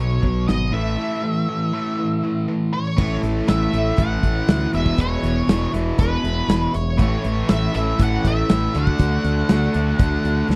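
A growling, overdriven fingered bass sits up front in this confident, sunny classic rock passage at 120 BPM, joined from 0.2 seconds by a big, dark rock drum kit with a punchy kick and rolled-off top. A dark octave-fuzz lead guitar carries the melody through wah and distortion over two bright, distorted riffing guitars, while a full-bodied, picked steel-string acoustic guitar with audible finger squeak enters in the background at 3.0 seconds. A very quiet, double-tracked cranked stack guitar adds an overdriven riff from 7.0 seconds, all captured as a dry, close 1970s-style studio recording in a small room.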